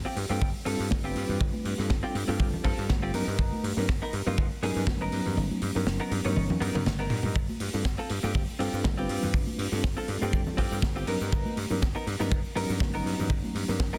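This short excerpt has a dense, heavily limited modern sound with light reverb and a small room ambience, and it carries a feel-good, sunny nu-disco groove at 121 BPM in 4/4 with a gentle 16th-note swing. A dry thumbed slap bass, bright, punchy and foam-muted with tube saturation, anchors the low end from the first second, while an up-front, tight acoustic kick drives the pulse. A clean, picked electric guitar recorded direct plays a compressed riff dressed in lush chorus and slapback echo, and a mellow, reedy electric piano fills in the accompaniment through its built-in speakers, its fast tremolo and sidechain pumping giving it a lively shimmer. A tight funk kit with a high-tuned snare, hi-hat and toms sits beside soft-handed, ringing congas and an egg shaker tucked in the background. The harmony alternates between G7sus4 and Bmaj7/G, and the kick drops out between 5.4 and 7.4 seconds while a drum fill starting at 6.4 seconds leads back into the full groove.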